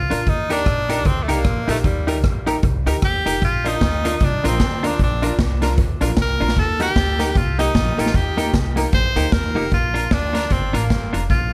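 An edgy, forceful tenor saxophone solos up front with vibrato and scooped notes, its punchy pop-style lines trailed by dub echo across this bouncy, upbeat ska fragment in Bb major at 152 BPM with a swung eighth-note feel. Beneath it, a woody, thumpy pizzicato upright bass on gut strings and a boomy, airy street-band drum kit with hi-hat, kick, rim click and snare, also touched by dub echo, drive the groove. A clean, compressed picked electric guitar accompanies while a jangly, detuned honky-tonk upright piano adds stabs over chords moving between Eb and Bb, with the piano dropping out at 9.7 seconds, all set in light reverb.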